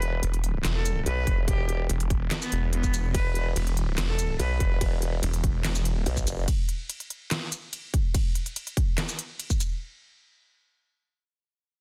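A dry, dense and heavily limited mix carries this heavy, aggressive half-time wobble dubstep drop, cut from a longer piece. A formant-sweep wobble bass with chorus and overdrive and a growling, detuned saw bass with distortion sit up front, while a clear, focused bowed cello with vibrato and delay carries the melody until 4.7 s. A dubstep drum kit brings a deep snare, crisp hats, ride cymbal, shaker and handclaps, and a punchy, tape-warm electronic kick enters up front at 1.3 s.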